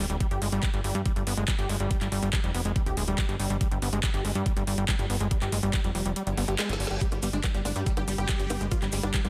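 A dense, heavily limited modern master with light reverb and a digital ambience frames this intense, psychedelic trance excerpt in a straight 4/4. From the outset, a punchy, funky analog bass with a filter pluck and fast attack sits up front beneath a squelchy, gritty acid bass riff that is saturated and resonant, pumping with sidechain and trailing delay. An overdriven, knocking electronic kick plays alongside a layered garage kit of woody snare, metallic hats, handclaps and bongos, which carries the same overdrive. At 6.2 seconds the kick drops out while a reverse cymbal sounds in the background and a drum fill leads up to 7.0 seconds. There a huge, detuned supersaw melody arrives, thick and airy, compressed and treated with phaser, vibrato, sidechain pumping and delay, joined by grainy, very quiet maracas and moments later by a faint, morphing wavetable pad with chorus and phaser.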